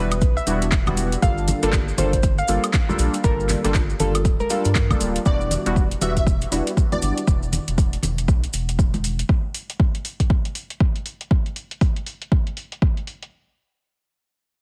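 Smooth and late-night, this deep house excerpt, cut from a longer piece, rides a swung groove under an Em9 to Gm9 chord movement. A gentle, dark pluck carries the opening melody through subtle chorus and dub echo, while warm analog keys stab beneath it, detuned and sawtooth-edged, shaded by chorus and phaser and pumping with sidechain compression. A deep, round analog bass pumps in the same way, and an up-front, overdriven electronic kick anchors the beat alongside a deep house kit of handclaps, metallic hi-hats and woodblock, with high-tuned congas and grainy, mellow maracas tucked into the background. At 5.3 seconds a punchy, catchy unison lead with vibrato takes over the melody as the keys get a filter sweep, then the chords drop away at 9.3 seconds. After that the drums carry on to 13.3 seconds. The mix is dry and heavily compressed, giving it a radio-like sound.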